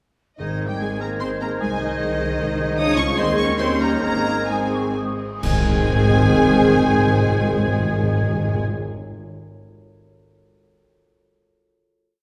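Lush, vibrato-rich violins carry the melody of this graceful, spirited orchestral piece in triple time, while a second violin section doubles the tune in unison and at the octave, joined by a roomy oboe and rich cellos also doubling it an octave away. Airy flutes, a bright clarinet, a distant bassoon and the horn section hold sustained chords, with violas repeating notes beneath and woody double basses marking the beats. Soft-mallet timpani and, from 2.8 to 6.3 seconds, cymbal swells, crashes and bass drum strokes add drama as the music slows into a final accented chord at 5.4 seconds, all set back in a wet, reverberant scoring stage.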